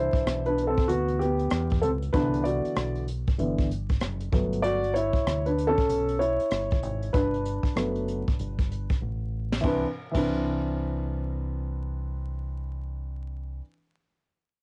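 This hip hop excerpt has the hazy, home-recorded character of cassette, with vinyl crackle, light reverb and a muffled top end. The mood is warm and relaxed, in a jazz-hop style with a lazy swing on the sixteenths. A dark, mellow upright piano with a woody, natural tone sits up front with a solo that runs until 9.6 seconds, colored by its own cassette-tape treatment as the harmony drifts from Cmaj9 to Gmaj9 and back. Beneath it, a deep dub fingered electric bass gives a round, direct-and-amped low end with a touch of transformer saturation. A jazz brush drum kit recorded in a small room adds dusky cymbals, a high-tuned snare, rim clicks and a boomy kick. It plays a fill at 9.0 seconds and falls silent at 10.3 seconds.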